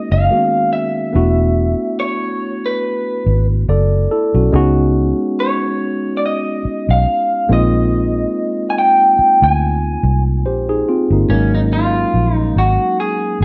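A lightly swung 16th-note groove at 71 BPM in 4/4 carries this smooth, introspective neo-soul R&B fragment in G# dorian, where a dark, round, foam-muted fingered bass enters at 0.1 s beneath a worn, slightly out-of-tune tine electric piano heard through its built-in speakers, while a picked, slightly broken-up and compressed electric guitar through a small old amp, bathed in spring reverb and slapback echo, carries the melody over sus4 ninth chords and steps into a clean solo at 11.3 s, all within a lightly reverberant room.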